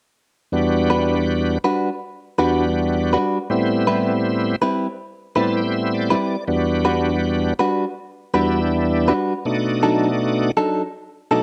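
Blues in a mournful, brooding mood, this excerpt cut from a longer piece sets a bright, shouting tonewheel organ up front, lightly overdriven with key click, chorus vibrato and a slow rotary speaker, carrying the accompaniment from 0.5 seconds and adding a fill between 5.0 and 6.5 seconds. A clean, direct-recorded electric guitar with a picked, compressed, scooped tone and spring reverb joins at 0.9 seconds with stabs over minor ninth chords that turn to a sharp-ninth dominant near the end. The sound is dry and close, like a 1970s studio recording with light reverb.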